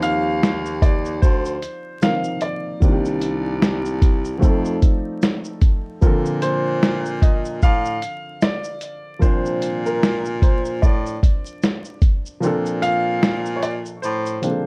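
Lo-fi hip hop at a mellow, cosy 75 BPM with a 16th-note swing in Bb major, where a woody upright piano carries the melody through analog delay over a soft, felt-muted upright piano with audible action noise, a warm subtoned baritone saxophone plays the bass line from a distance, and an up-front, muffled, gritty sampler-style kit of thumpy kick, hi-hat, shaker and snare drives the groove until the kick drops out at 12.4 s, all set in light reverb with dark, warm production and vinyl crackle in this excerpt from a longer piece.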